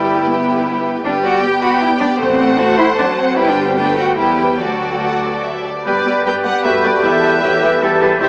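A rich, focused violin section carries the melody of this spirited, quick classical-period movement in G major, a short cut from a longer piece in 3/4 at 139-160 BPM with a rubato feel, while a second violin line, smooth violas and cellos, and a distant, lush double bass section fill out the strings with vibrato. At 5.9 seconds an airy flute group, a warm clarinet and a roomy oboe add second lines, a mellow bassoon joins the accompaniment and a very quiet horn section holds sustained chords. The whole orchestra sits in a vast, echoing space with a huge, wet reverb, yet the sound comes through as if from a small speaker.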